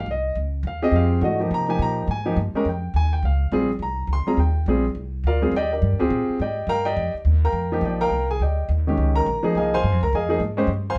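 A 209 BPM swing in 4/4 carries this open, hypnotic modal jazz fragment, where an intimate grand piano, with its action noise audible, comps over Dbmaj9, Ebmaj9 and back, while a woody, thumpy pizzicato upright bass on gut strings sits dark and up front, both heard as a band playing live in one room with moderate studio reverb and a softened, rounded top end.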